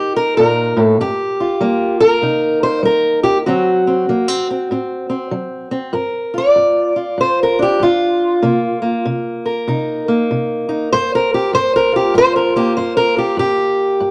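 A boxy, parlour-style fingerpicked steel-string acoustic guitar sits up front in this soulful, brooding acoustic country blues excerpt, played alone in G minor at 97 BPM with a swung 4/4 feel. It moves through a rootless Cm7, Gm7 and D7 before taking a solo turn from 5.9 seconds over Gm7 and Cm7, ranging from G2 to D5. Moderate studio reverb gives the guitar a sense of room.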